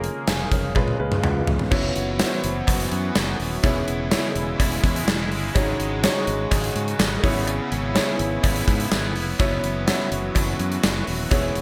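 This is a short excerpt of nostalgic, uplifting 1980s-style pop in a straight four, bright with polished digital production and a moderate plate reverb. A gated 80s drum kit sits up front with a tight kick, medium-tuned snare, bright cymbals, tambourine and toms in an airy stone room, and it plays a drum fill from 0.8 to 1.7 seconds. A warm grand piano carries the accompaniment with a shimmering reverb, while a detuned sawtooth pad with a slow attack, chorus and filter swell holds sustained chords beneath it. A punchy fretless electric bass anchors the low end, and a close, dry cowbell adds a faint metallic tick. At 1.7 seconds a biting, double-tracked overdriven guitar enters in the background, as the chords move through F#7sus4, E6 and G#7sus4 toward C#m7/G#.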